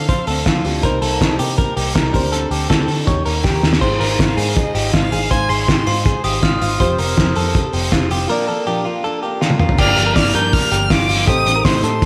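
A rich, focused violin with vibrato opens this bittersweet, restless jangly indie pop excerpt over a muffled, thuddy drum kit, round foam-muted bass, twangy direct-recorded electric guitar arpeggios, a full-bodied acoustic guitar and a worn, reedy electric piano, with slapback echo on the violin and several other parts, a sparkling glockenspiel line at 5.9 seconds and drum fills at 3.4 and 9.4 seconds, all within a lush hall reverb and a big arena sound.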